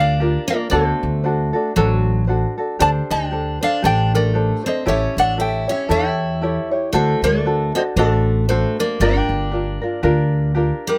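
This short excerpt of a longer Hawaiian piece opens with all four parts together: a fingerpicked ukulele carrying the melody, a picked steel-string acoustic guitar adding a second line beneath it, a thumb-plucked tenor ukulele in accompaniment, and a pizzicato upright bass. The mood is languid and sunny, set at 116 BPM in 4/4 with a gentle swing on the eighth notes. The lead ukulele sounds light and warm, while the jumbo guitar brings a full-bodied tone to its lower line. The tenor ukulele sits up front, as does the bass, whose woody, thumpy steel-string sound anchors the arrangement until it stops at 10.7 s. The harmony moves from Gm7 through D7, D7sus4 and A7, then back to D7 before returning to Gm7 at 9.0 s, all bathed in a light reverb.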